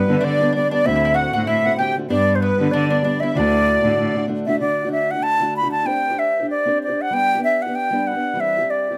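Rollicking and lively, this swung Celtic reel excerpt in D mixolydian races along at 192 BPM, with an airy, vibrato-tinged wooden flute carrying the melody up front over a boxy fingerpicked archtop guitar, while a reedy, sweet accordion and a round, double-strung mandolin add second lines that drop out at 4.3 seconds and an earthy bowed cello holds the bass until 4.1 seconds, all captured with close, detailed microphones and light reverb.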